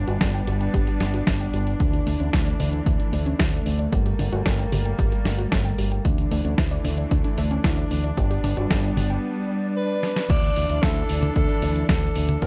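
A dark, softly bowed string section holds sustained chords over a bright, punchy envelope-filtered bass, a punchy layered electronic kick and a gritty sampler-style kit with crash, hi-hat, snare and toms, while a warbling lo-fi pluck with chorus and tape echo spins arpeggios in the background until 9.2 s, and as an electronic swell rises a breathy, whispered alto saxophone enters at 9.8 s with an intimate, scooped melody, followed by a drum fill, in this danceable, romantic italo disco excerpt from a dry, close 1970s-style studio recording.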